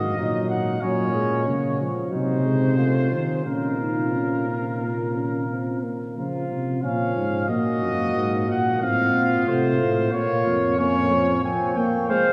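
Trumpet, flugelhorn, euphonium and tuba open together in this solemn yet driving classical brass canzona cut from a longer piece: the mellow, lightly vibrato trumpet carries the melody up front over the soft-attacked, vintage-toned flugelhorn's second line, the dark, roomy euphonium's accompaniment and the punchy tuba bass, which drops out at 11.4 seconds, all within a long, wet cathedral reverb.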